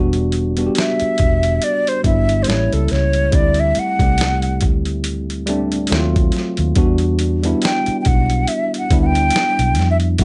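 A breathy, hollow concert flute with vibrato and a slapback echo carries the melody from 0.8 seconds, close-miked and up front in this introspective, late-night neo-soul and R&B excerpt with a swung sixteenth-note feel. Beneath it, a worn, slightly out-of-tune tine electric piano with light overdrive moves through chords such as Em9, A7b9 and D#dim7, while a dark, round, foam-muted electric bass anchors the low end. A gritty, pitched-down boom bap drum kit with a thumpy kick and tape-warm compression joins at 0.1 seconds, and a light reverb surrounds the mix.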